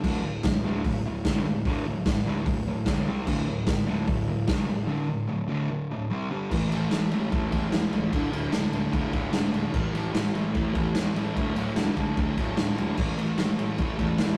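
Raw and rowdy, this garage rock excerpt from a longer piece charges along at 148 BPM in a straight 4/4, captured as a rough rehearsal-room recording with tube saturation and light reverb. A dark, double-tracked fuzz guitar sits up front playing the riff from D2 to C4, built on power chords that move mostly between D5, C5, G5 and A5. Beneath it, a growly, overdriven picked bass with a bright, amped edge holds the low end from D1 to A2, tucked into the background. The raw drum kit is also up front, gritty and saturated with a rolled-off top, a punchy kick, a medium-tuned snare, hi-hat, crash and ride ringing in a bright stone room. A break runs from 4.9 to 6.5 seconds before the second section pushes on, alternating between D5 and A5 until the cut at 14.4 seconds.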